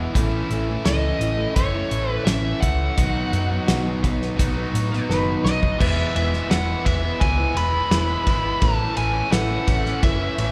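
A picked parlour acoustic guitar, a biting double-tracked overdriven guitar riff and a round hollow-body electric bass open this jangly, nostalgic folk rock and heartland rock excerpt, quickly joined by a cloth-damped, thuddy drum kit with a fat snare and dark cymbals and then a nasal lead guitar melody through a parked wah, while a dim clean electric guitar line sounds through spring reverb from 3.7 to 5.4 s and a reedy, breathing pedal harmonium adds very quiet sustained chords from 5.8 s, the band heard in the lingering reverb of a church or concert hall.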